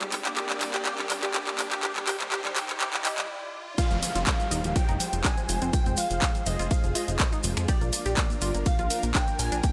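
A straight 4/4 pulse at 123 BPM drives this dreamy, bittersweet progressive house cut in F dorian, taken from a longer piece. It opens on a build-up in which an overdriven house kit of bright finger snaps, handclaps and hi-hat plays a fill over a lush, full-bodied supersaw pad and a tight, driving sequenced synth arpeggio, both pumping against the sidechain and the latter softened by chorus and tape echo, while a background riser and downlifter adds electronic sweep. A smooth, velvety lead enters at 3.1 seconds with portamento, chorus and tape echo, before a brief stop at 3.3 seconds gives way to the drop at 3.8 seconds. There a punchy, up-front electronic kick lands, followed a moment later by a fat, thick, detuned analog bass, a glassy, crystalline wavetable pluck traces a second line in the background, grainy acoustic maracas sit close and dry, and a gritty, pitched-up breakbeat kit adds a very quiet ride cymbal and high-tuned snare. 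The harmony moves from Gm through Fmadd9 to Bb6, and light reverb with a high-pass filter keeps the mix airy.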